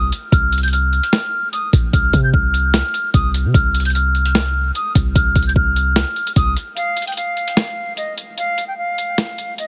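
A concert flute and a deep, boomy 808-style bass open this short, menacing trap excerpt in C minor, with a sampler-style drum kit arriving at 0.1 seconds to set a half-time feel at 149 BPM. The flute carries the melody high in its range, its pure, straight tone passed through a low-pass filter and tape echo. Beneath it, the sine-based bass carries a noise layer, a fast attack and a mellow decay, moving over Bb5/C and Csus4 harmony before it stops at 6.6 seconds. The drums are gritty and pitched down, pairing a thumpy kick with a high-tuned snare and hi-hat. From 6.8 seconds a break drops the chords, leaving flute and drums to finish the fragment. The mix is dry and up front, with a heavily compressed, radio-like sound that keeps it hard-hitting.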